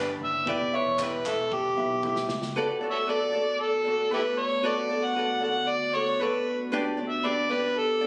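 Acoustic pop with a carefree, sunny mood, this piece is led by an up-front, gritty, overdriven harmonica solo with light vibrato, tongue slaps and tape echo, over a bright, fingerpicked ukulele. A woody upright piano sits in the background of the opening, and a round, punchy fingered electric bass is joined at 0.5 seconds by a loose indie kit with handclaps, a punchy kick and a medium-tuned snare; the kit plays a fill before it and the bass drop out at 2.5 seconds, as the chords move from Em to D6. From 2.8 seconds, a glassy, ethereal FM pad with ensemble chorus and its own reverb holds mellow sustained chords through a change to G, and the take has the feel of a phone recording in a small room.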